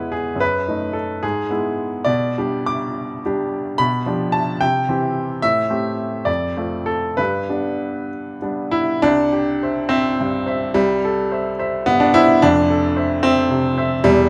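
A clear, intimate baby grand piano, natural and up front with audible action noise, plays alone through this brooding, passionate romantic character piece in C major, a classical fragment cut from a longer work that moves in a rubato 6/8 at 63-76 BPM through chords such as D#dim/F#, G7/B and Am7 before a new section opens at 9.0 seconds and reaches Fmaj7 at 12.4 seconds, all captured by close, detailed microphones in a recital hall with moderate reverb.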